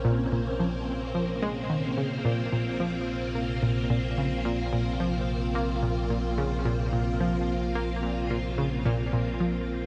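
An up-front string machine ensemble holds a lush, vintage Bbmadd9 chord with a slow attack, its sawtooth tone thickened by a sub octave, ensemble chorus and a moving notch, in this expansive, mysterious stretch of sequencer-driven ambient space music at 109 BPM in Bb minor. Beneath it, a bright, detuned analog pluck repeats a riff with a fast attack, short decay, filter sweep and noise layer, carried on chorus and tape echo until 9.5 s, while a deep, round sine sub bass sustains a low Bb. A huge ambient reverb with a 7.7-second tail surrounds the mix throughout this brief fragment of a longer piece.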